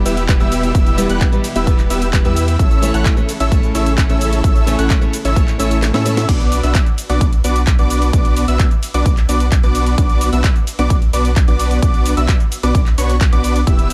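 A huge, thick supersaw riff drives this powerful, emotional festival progressive house excerpt in B minor at 130 BPM, pumping with sidechain and trailing dub echo over a punchy, up-front electronic kick and a house kit with a cracking snare, hi-hat, handclaps, cabasa, ride and crash. A deep saturated sub bass anchors the Em and A chords, while a nasal, warbling unison lead plays high arpeggios with a vintage cassette tint, and a picked steel-string acoustic guitar with finger squeak and a lush, distant string section in the background carry the opening until about 6.2 seconds. The kick drops out for a drum fill from 5.8 seconds before the second drop lands on Bm at 6.3 seconds, all set in a dark, digital ambience.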